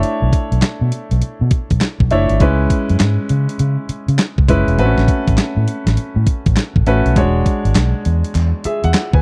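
A swung sixteenth-note groove in 4/4 drives this slick, bouncy new jack swing excerpt. A clean, sampler-style 12-bit drum machine lays down the beat from the very first moment with a thumpy kick, a medium-tuned snare, hi-hat and handclaps, the kit overdriven and re-recorded in a large room yet sitting up front. A vintage fingered electric bass comes in at 0.2 seconds, dark, foam-muted and round, with a punchy amped tone that matches the drums in level. A clear, polished baby grand piano, also there from the start, holds the accompaniment, present and close as it moves through Bm11, C#m7, A69 and E13. Near the end, at 7.8 seconds, a crisp group handclap slips in, very quiet and distant as if from a large room, while the rest of the mix stays dry and close in the manner of a 1970s studio.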